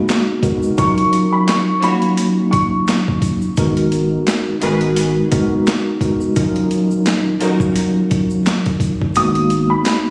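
A swung boom-bap groove at 86 BPM in 4/4 drives this tough, moody hip-hop fragment in G# dorian. The sampler-style kit sits up front, compressed, gritty and pitched down, with a thumpy kick, high-tuned snare, handclaps and hi-hat, while a grainy tube shaker stays close and dry in the background. A mellow tine electric piano, clean and played through its built-in speakers with a cassette-tape tint, carries the G#m7 and D#m7 chords throughout, and a round sine sub bass holds sustained low notes beneath it. A dark, worn upright piano with audible action noise and a woody, slightly detuned tone plays a high, intimate melody at the opening. Bowed studio strings enter with stabs at 1.8 seconds, expressive with vibrato, portamento and a smooth top, both the strings and the upright piano carrying tape echo. The kick drops out as the upright piano returns at 9.2 seconds, and light studio reverb, vinyl crackle and a phone-in-the-room recording give the whole a lo-fi haze.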